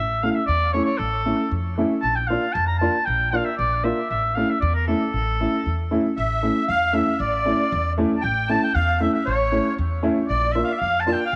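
Klezmer in 2/4 at 116 BPM, soulful and festive, moving straight in A phrygian dominant over a chord shift between A and Bb, cut from a longer piece. A clear oboe carries the melody from A4 to Bb5 with light vibrato, a soft attack and a classical style, sounding distant and roomy yet up front, with a cassette tape colour and tape echo. An upright bass plays pizzicato on gut strings, dark and thumpy, while an upright piano supplies woody accompaniment from 0.2 seconds, also shaded by cassette tape. At 6.2 seconds, as the opening section repeats, a musette accordion joins with a reedy, shimmering second line in its wet tuning, sitting lower in the mix. The whole has the intimate, lightly reverberant feel of a home recording on cassette.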